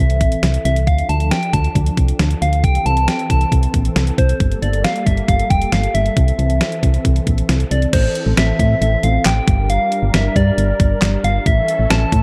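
A punchy, round FM bass sits up front in this cool, nocturnal synth-pop excerpt, alongside a sampler-style digital drum machine with a thumpy kick and fat snare, a mellow, detuned sawtooth pad with chorus, and a gentle, keys-like, warbling FM lead with chorus and dub echo, all set in an echo-heavy mix with light reverb.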